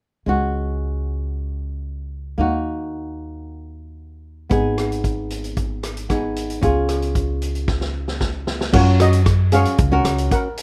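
A festive, carefree calypso excerpt at 113 BPM, opening with fingerpicked flamenco guitar and woody pizzicato upright bass moving through C#sus4, D#m, G#m and C# before a vintage drum kit with a punchy kick and dark cymbals joins at 4.5 seconds and plays a fill leading into the next section. At 8.7 seconds a shimmering lead steel pan, struck with medium rubber sticks and set in plate reverb, takes the melody over an F#maj7 chord. The guitar, bass and drums sit up front in a rough home demo mix with light reverb.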